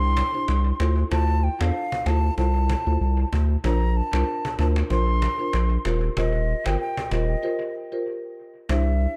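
Afrobeats with a sunny, joyful mood and a lightly swung sixteenth-note feel, cut from a longer piece. A hollow, pure silver concert flute with vibrato carries the melody through analog delay, over round, airy soft-mallet marimba, a deep, thick saturated sub bass sitting up front, and a band-limited vintage cajon with faint snares, played with hard hands and also sent through analog delay. Echo-heavy studio reverb fills the mix, and a break arrives at 7.4 seconds as the harmony moves from Cadd9 through Dm7 and Bbadd9 to Eb6.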